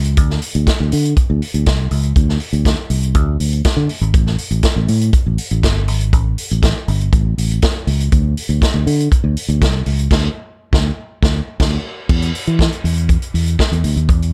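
A straight disco groove, glamorous and danceable, pairs a round, dusky fingered electric bass with a vintage acoustic drum kit of tight kick, medium-tuned snare, hi-hat and dark crash cymbal with a rolled-off top, both up front and dry throughout this cut from a longer piece, with a band accent from 10.1 to 12.1 seconds before a new section begins at 12.1 seconds.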